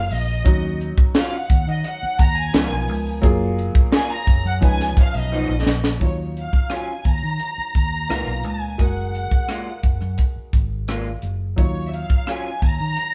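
A stone-walled room with moderate reverb gives this lush 1970s-style soul excerpt a live, band-in-one-room sound, smooth and unhurried at 86 BPM in a straight 4/4. A dark, woody studio violin section carries the melody from the start, its soft-attack bowed ensemble tone sitting distant and lush, and it takes a featured solo through the first 6.0 seconds before a drum fill from 5.3 seconds leads into the next passage. Up front, a tight funk drum kit with a high-tuned snare, rim clicks, hi-hat and a tight kick keeps time with an airy, polished snap, while a vintage muted fingered electric bass adds a round, punchy, foam-muted low end. A clear concert grand piano with deep bass and short sustain fills in the accompaniment, and from 1.1 seconds an electric guitar through a small old amp plays a twangy, slightly broken-up, lo-fi riff shaded with vibrato. The harmony moves through rich extended chords such as D#m7, C#13 and F#maj9, keeping the mood smooth and warm.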